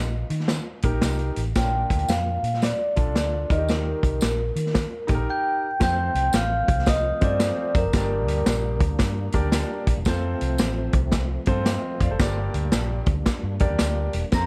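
A mellow, ringing vibraphone with soft mallets and analog delay carries the melody from 1.6 s in this joyful, danceable, swinging 1960s-style soul excerpt, joined at 5.3 s by a bell-like glockenspiel second line, over a clear, intimate grand piano, a dark, round, foam-muted fingered electric bass, a punchy, up-front vintage drum kit, a jingly tambourine in the background and, from 5.8 s, a very quiet, lightly overdriven tonewheel organ with slow rotary holding sustained chords, all in a dry mix.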